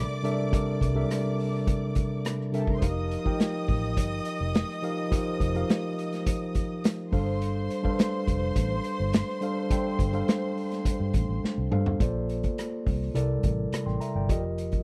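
Opening on a mellow tine electric piano, a round, foam-muted fingered electric bass and an intimate bowed string section with vibrato and tape echo, this silky, cinematic 1970s-style soul passage from a longer piece moves through lush extended chords as a punchy, rolled-off acoustic drum kit in a pumping small room joins at 0.1 s, and the strings stop at 11.4 s as a drum fill leads into a closing Bbmaj9 turn at 12.0 s.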